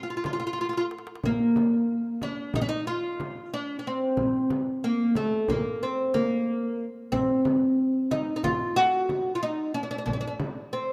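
Turkish makam ensemble music in 9/8 at 183 BPM counted in eighths, melancholic and longing in mood, cut from a longer piece. A bright, woody fretless oud with double strings carries the melody up front, plectrum-plucked between A3 and Gb4, while a close, dry clay-shell darbuka sits in the background and a deep frame drum sounds distant, as if in a large room. A drum fill from 0.6 to 1.2 seconds leads into the longer second section, and the rough home demo mix is bathed in a moderate plate reverb.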